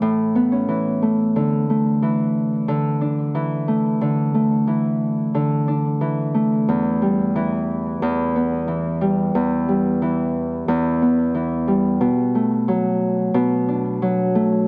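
Folktronica at 90 BPM in D major, this delicate, warm excerpt features a Celtic harp alone for its full 14.7 seconds, thumb-plucked and ringing up front in an acoustic tone across a low-to-middle range. The harp carries vintage 12-bit sampler grit and tape echo, set in a light reverb. Its harmony moves from A through Dsus2 and Em to a closing Bm7.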